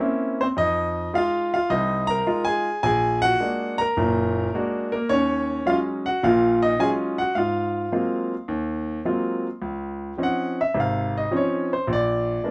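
The rhythm swings its eighth notes in 4/4 at 106 BPM, giving this short solo jazz excerpt a sophisticated lilt with a playful edge. A single grand piano carries everything, its clear, natural tone sitting up front in a moderate studio room with a brief ambience. Set in Db major and tuned slightly low at A4 = 439 Hz, the playing spans from F#1 in the deep bass up to Bb5. The harmony moves through rich extended colours, from C7b9 and Fm7 through Bbaug7, Ebm11 and Ab13, before resolving to Dbmaj9 at 9.6 s. From there the piano opens into a new solo passage that touches Bb just before the clip ends at 12.5 s.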